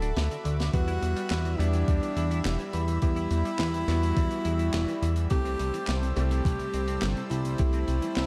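A straight 4/4 pulse drives this nocturnal synthwave excerpt, where a short drum fill from 0.2 to 0.7 s gives way at 0.7 s to an overdriven, thumpy electronic kick alongside the airy studio kit's handclaps, hi-hat and snare, while an up-front, glossy chorused synth bass anchors soft, sidechain-pumped supersaw chords, a clean semi-hollow electric guitar riff with chorus and tape echo, and bright, clangy electric grand piano stabs, all beneath a close-miked, warm tenor saxophone melody with light vibrato and subtone through tape echo, in a dark production with light reverb.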